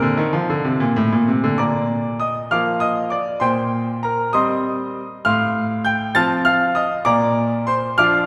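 Playful and graceful, this short cut from a classical-period piano sonatina in a straight 6/8 features a solo grand piano, brilliant and up front with a short sustain, ranging from A2 to A6 over a chord progression moving from Bb through Cm7/Bb and F/A back to Bb, all set in a wet concert hall reverb.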